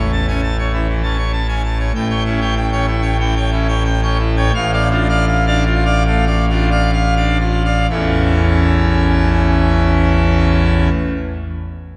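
A classical organ toccata in A major, majestic and jubilant, cut from a longer piece, its pace ranging from 59 to 99 BPM in 4/4 and slowing from 0.7 to 7.9 seconds. A solo pipe organ on full organ with mixtures sounds brilliant and up front in a romantic voicing, spanning A1 to A5 and moving from A through A7 and Dm/A before returning to A at 7.9 seconds. The organ stops at 10.9 seconds, leaving a wet church reverb with a 2.7-second decay ringing in the hall.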